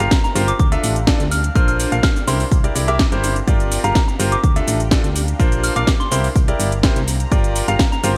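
A bright, 1980s-style digital sheen with light reverb frames this bittersweet yet energetic piano house cut from a longer piece, running at 125 BPM in 4/4 in G dorian over a Gm7, Dm, Bbadd9, C7 cycle. A brilliant concert grand with audible action noise drives the riff, pumping alongside a round FM bass, while a punchy, up-front electronic kick anchors a tape-tinged house kit of cracking snare, metallic hats and shaker that carries gated reverb. High above, a soft FM bell melody shimmers through chorus, phaser and digital delay, and a very quiet granular pad drifts in at 0.1 seconds as a blurred, evolving cloud.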